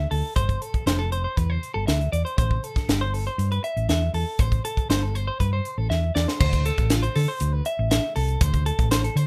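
A dark, round hollow-body short-scale bass sits up front in this bright, intricate math rock and midwest emo excerpt at 119 BPM in 4/4, its amped tone anchoring a clean, compressed electric guitar that picks arpeggios with a touch of vibrato over G9sus4 and Am7 chords. A crisp fusion kit in an airy studio room drives things with a punchy kick, a high-tuned snare, hi-hat and crash, and a drum fill at 5.9 s leads into a new section on D7sus2 at 6.4 s. Light reverb colours a rough home demo mix, tuned slightly low to A4 = 439 Hz.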